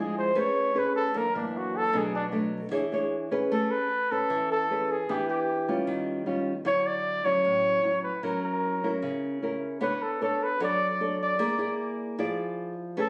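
Bossa nova with a breezy, relaxed mood, this short cut from a longer piece puts a warm flugelhorn up front, soloing in a jazz style with light vibrato, soft attacks and scooped notes over a small, thumb-plucked acoustic nylon-string guitar moving through chords such as Amaj9, Bm7 and Dmaj9, all heard as if caught on a phone in the room, with light reverb and a dull, rolled-off top end.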